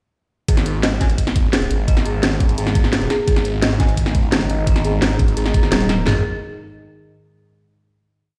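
Dark technical drum and bass in a straight four, this whole piece is tense and aggressive, opening almost straight into a drop that runs until a final chord closes it out. Two layered electronic drum kits, re-recorded in a small room, drive it: one pairs a knocking kick and cracking snare with floor toms in a broken-beat pattern, while the other sits up front with bright closed hats and tight, technical snares. Underneath, a thick, swirling detuned saw bass pumps against the kick, its phased sawtooth unison chopped into phrases, as an eerie, inharmonic FM bell repeats a 16-step arpeggio sequence through chorus, phaser and digital delay. At 3.3 seconds a resonant, wave-folded pad rises on a slow filter swell, sustaining evolving chords that also duck with the sidechain. A heavy, saturated pluck wobble bass pushes in at 5.7 seconds with modulated phrases whose wobble speed changes, all heard through light stone-room reverb on a big system with a dulled top end.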